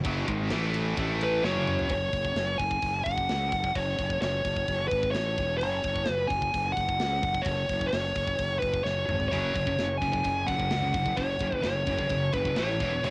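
A dark, distorted high-gain lead guitar carries the melody up front from 1.2 seconds over a growly, fuzz-laden fingered electric bass, a tight metal drum kit with a rolled-off top and cassette-tape colour, scooped high-gain and tight distorted guitar riffs in the background, and a very quiet double-tracked fuzz guitar riff, in a heavy, dark 129 BPM heavy metal excerpt in F# minor with small room ambience from a home cassette recording, where the rhythm guitars drop out at 1.9 seconds and two of them return at 9.3 seconds.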